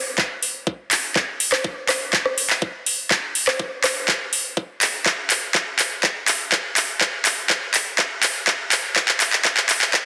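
Emotional and expansive, this house excerpt is cut from a longer piece and moves at 123 BPM in a straight 4/4. It is built entirely from drums, with the whole passage serving as a build-up and drum fill. An electronic kick drum, layered and overdriven with a knocking punch, sits lower in the mix and carries the sound of a small room. Up front, a house drum kit of handclaps, hi-hat and rim click adds metallic hats and its own overdriven grit, re-recorded in a large room. Both parts run from 0.2 to 10.0 seconds, bathed in a lush hall reverb and pressed into a dense, heavily limited modern master.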